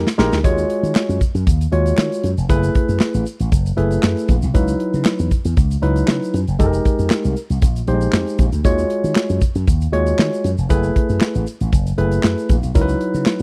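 A punchy slap bass run through an envelope filter drives this funky, danceable slice of early-eighties boogie funk at 117 BPM, joined by a bright, barky tine electric piano through a combo amp, an up-front acoustic drum kit with handclaps, hi-hat, punchy kick and medium-tuned snare that opens on a short fill, and a grainy tube shaker tucked in the background, all moving through minor eleventh chords such as Ebm11, Gbm11, Dbm11 and Fm11 in a dry, close small-room sound.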